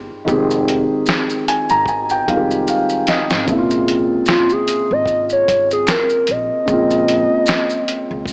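Hazy and melancholic, this short lo-fi hip hop cut from a longer piece moves at 75 BPM in Bb minor with a gentle swing. A soft, felt-muted upright piano sits up front through tape-worn filtering, adding a fill from 1.1 to 3.5 seconds, while a woody pizzicato upright bass plays alongside it from the start and a muffled, compressed sampler-style drum kit with a thumpy kick joins in at 0.3 seconds, fitting in a fill before the chords shift from Fm7 to Bbm7. At 4.3 seconds a warbling, detuned lead with chorus and vibrato carries the melody, joined by barely audible finger snaps, all wrapped in light small-room ambience and a cassette, small-speaker sound.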